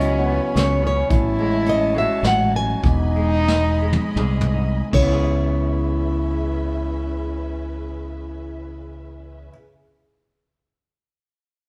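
Acoustic folk-pop ballad in C# minor and 3/4, melancholic and heartbroken, moving between 74 and 109 BPM and slowing from 1.1 to 4.9 seconds in this excerpt cut from a longer piece. A bright, fingerpicked nylon-string guitar carries the melody high in its range, while a clear French horn with light vibrato plays a classical-style second line beneath it. A twangy, slightly broken-up electric guitar through a small old amp picks out accompaniment, and a felt-muted upright piano adds soft, intimate arpeggios in the background, its action noise audible. A distant string section holds bowed chords with vibrato, soft attacks and expressive portamento, over a round, dark fingered electric bass sitting up front. Brushes on a vintage kit with dark cymbals and a punchy kick drive a drum fill from 3.5 seconds before the drums stop at 5.1 seconds, as the chords cycle from C#m7 through Amaj7 and Emaj7 back to C#m7, all heard as a band playing live in one room with moderate large studio reverb.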